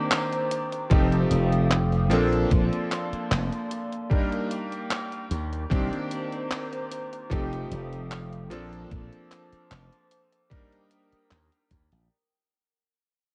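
Vaporwave at 75 BPM with a gentle 16th-note swing and slightly flat tuning, this nostalgic, woozy fragment fades throughout as a bright, clangy electric grand piano drenched in lush chorus and analog delay and a warbling, lo-fi pad with 12-bit grit trace Cm9, F9, Bbmaj9 and Ebmaj7 over detuned 8-bit handclaps and hi-hat, a thumpy up-front electronic kick and a punchy slap bass entering at 0.9 seconds, all through a light reverb and cassette-tape haze.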